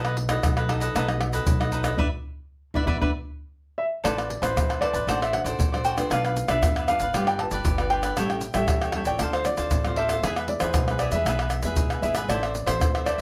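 A lively, straight-feel samba and choro groove in 4/4 drives this nostalgic excerpt, carried by a tight, up-front percussion section of tube shaker, pandeiro, tamborim and surdo, played with hard hands in a small-room sound. A crisp, bright picked cavaquinho and a full-bodied, thumb-plucked nylon-string guitar, with audible finger squeak, share the accompaniment from the start, while a woody, thumpy pizzicato upright bass on gut strings anchors the low end. The band hits an accent together between 2.0 and 4.0 seconds, over chords moving from B7 to E5. At 3.8 seconds a dark, mellow grand piano with a smooth, vintage character enters with the melody in its upper register. The harmony then winds through Amadd9, D7/A, Bdim, G7, A7, Dm7 and E before landing on Am, all within a moderate studio reverb, as the fragment is cut from a longer piece.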